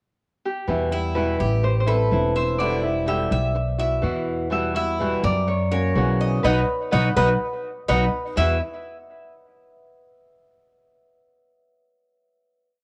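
A woody, growly upright bass sits up front with a tumbao line that anticipates the chords in this danceable Latin piece, while a bright, ringing Celtic harp plays call-phrase motifs over a fingerpicked and strummed flamenco guitar with muted slaps and finger squeak, and a metallic, double-strung Cuban tres picks an arpeggiated guajeo, the harp, guitar and tres all heard through cassette tape and plate reverb, the tres adding analog delay, in a homespun cassette recording where a band accent from 6.4 s leads into a final chord at 8.4 s.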